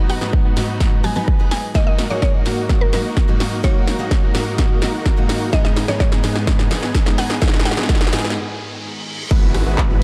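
A dark, lightly reverberant production frames this powerful, emotional festival progressive house excerpt at 127 BPM in G# minor. The build-up rests on a punchy, up-front electronic kick and a layered big-room kit of snare, handclaps, hi-hat, rim click and crash, with a drum fill running until 8.4 s. A bright picked steel-string acoustic guitar pumps under sidechain beside a huge, euphoric supersaw riff set in the background through cassette tape, low-pass filter and dub echo, while a woody, round mallet-like synth pluck with chorus and dub echo carries the melody and a very quiet, nasal chamber string section holds sustained chords over B/G#, D#m/G# and G#m; after a break marked by a reverse cymbal among faint riser and downlifter effects, a thick, detuned saw bass arrives at 9.3 s on Eadd9/G#.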